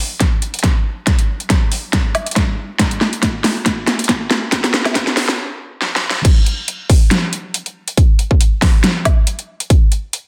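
A dense, heavily limited mix with moderate room reverb carries this aggressive, menacing dubstep fragment at 139 BPM in half-time with lightly swung 16ths, where a punchy electronic kick and a layered dubstep kit of huge snare, metallic hi-hats, crash and woodblock build through drum fills under a filter sweep, halt at 5.4 seconds, and then hit the drop at 6.2 seconds.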